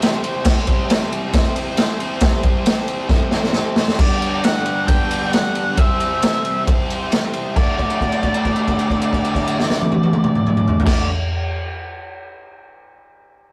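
Driving straight 4/4 at 135 BPM, a raw garage drum kit pounds up front with a punchy kick, medium-tuned snare, dark cymbals and toms, its gritty, saturated sound pumping in a small room, and a fill from 3.1 to 4.0 seconds kicks the song forward. A biting, double-tracked overdriven guitar plays the riff in D mixolydian over C, G and D chords, its picked tone carrying spring reverb. At 4.0 seconds a dark octave-fuzz lead guitar enters with a melody, and a note is held from 7.6 to 10.9 seconds, giving this rough rehearsal-room garage rock cut a rowdy, swaggering feel.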